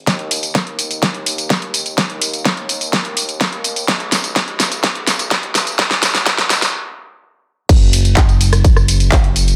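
This festival progressive house cut at 126 BPM feels euphoric and triumphant, opening with a build-up where a long drum fill from the up-front pop drum kit (snare, handclaps, rim click, warm hi-hats, tambourine, ride and crash cymbals) rides over a punchy, layered electronic kick. A fat analog bass sits low with a detuned, saturated sawtooth-and-square character, ring modulation and a filter sweep, all pumping under sidechain compression. After a brief stop from 6.7 to 7.7 seconds, the drop lands at 7.7 seconds in a lightly reverberant digital ambience.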